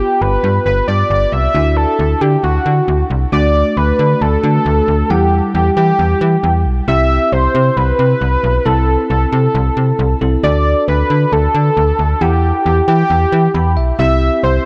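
A straight, driving 4/4 pulse carries this melancholic synth-pop excerpt, where a snappy, metallic slap-like FM bass sits up front from 0.2 seconds, under a bell-like tine electric piano that chimes through shimmer reverb and adds a short fill at 13.3 seconds. Over them, a bold, nasal octave-doubled lead built from detuned sawtooth and triangle tones sings with vibrato, chorus, shimmer reverb and analog delay. A moderate plate reverb and dark production frame the chords as they move from G7 and Dadd9 into a cycle of D, Emadd9, C and Am/C after 3.3 seconds.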